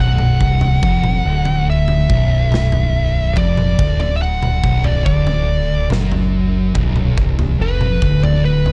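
A compressed, distorted fuzz lead guitar carries the melody in this sludgy, brooding stoner and doom metal passage at 71 BPM, cut from a longer piece and resting on B minor. Two dark, picked fuzz guitars sit in the background playing a low riff, alongside a growling, overdriven fingered electric bass. A big acoustic rock drum kit with a punchy kick, medium-tuned snare and toms enters at 0.2 seconds, all set in studio reverb with a dark, warm production.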